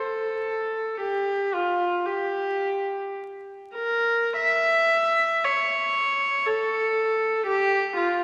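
Classical and lonely, this brief fragment of a longer work features a single bowed viola playing alone in a free, yearning 3/4 with expressive rubato. The viola sits up front with a rich, pure tone, its soft attack and sul tasto colour giving the line a floating quality between F4 and E5. A long church reverb surrounds the instrument, and vinyl crackle accompanies it throughout its 8.2 seconds.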